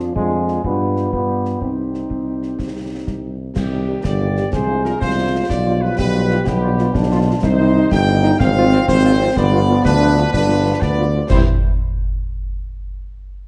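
Moving in 6/8 at 124 BPM, this stern, martial wind-band march in C minor is cut from a longer piece, with a softly attacked trumpet section carrying the melody over a clear, lightly vibrato euphonium second line, background French horns and a mellow tuba bass up front. Concert snare, bass drum and clash cymbals sound close and dry, while a dark, distant trombone section enters very quietly with sustained chords at 3.6 seconds. The harmony moves through G7 and Cm before landing on C at 11.3 seconds, in a warm production with a large studio reverb.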